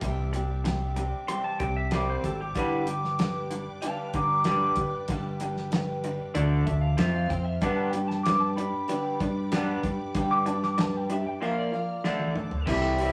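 Hopeful and warm, this folk rock and heartland rock excerpt rides a straight 4/4 groove from a damped 70s drum kit with dark cymbals, a fat snare and a tight kick, under a round, punchy fingered bass and a woody, boxy archtop acoustic picked on old strings. An electric guitar through a small old amp plays a slightly broken-up, lo-fi riff, while a lush bowed string section holds smooth chords in the background. From 1.3 seconds a bright, twangy pedal steel takes the lead with slide and volume swells, and a drum fill at 12.1 seconds closes the passage, all set in a rough rehearsal-room sound with tube saturation and wet stone-room reverb.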